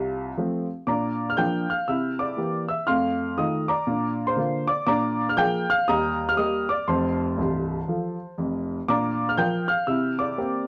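A clear, woody, slightly detuned upright piano plays solo and up front for the full 10.7 seconds in this playful, exuberant stride jazz fragment in Bb major, swinging at 120 BPM in 4/4 through changes such as Bb, C7, F7 and Eb beneath light reverb and the warbly pitch drift of worn old cassette tape.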